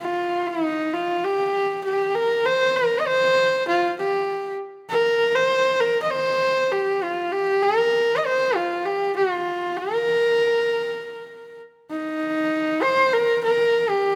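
Mongolian folk in a vast, proud mood, this short excerpt features a single bowed horsehead fiddle playing solo and up front, its husky, earthy horsehair tone carrying light vibrato and portamento through a moderate stage reverb, with a brief new section arriving at 12.2 seconds.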